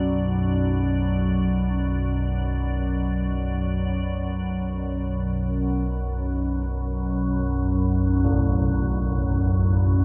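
A calm, organ-like drone sits up front in this cavernous, dark ambient excerpt in free time and B minor, its detuned sine tones thickened by ensemble chorus, while old church bells ring bronze and clangorous in the background through tape echo, and an icy, crystalline glass pad glints above until 4.0 seconds, all bathed in a huge, echoing reverb as the harmony moves from B minor to a bare B5.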